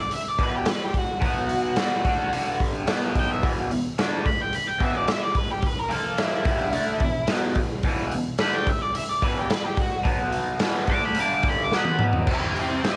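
A dry cassette home recording captures a raw, swaggering garage rock excerpt at 109 BPM in straight 4/4, where a dark, picked octave-fuzz lead guitar carries the melody from the start over a bright, overdriven, double-tracked rhythm guitar riff with phaser and an up-front acoustic drum kit with punchy kick and medium-tuned snare, leading to a drum fill at 11.7 seconds before the cut.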